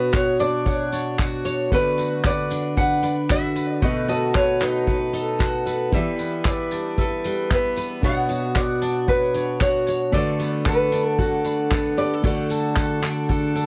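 Dry and gritty with a cassette-tape character, this excerpt of easy-going, heartfelt acoustic pop has a swung sixteenth-note feel. A fingerpicked nylon-string guitar with audible finger squeak carries the melody through tape echo. An up-front, full-bodied jumbo steel-string guitar and a woody, double-strung mandolin, whose arpeggios are also tape-echoed, fill out chords such as Bmadd9, D6, B7 and Em7, while a soft, felt-muted upright piano with audible action noise sits in the background from the start. From 0.1 seconds an airy, punchy unplugged drum kit played with bundle sticks brings kick, handclaps and tambourine, joined by a separate jingly, vintage tambourine in the background.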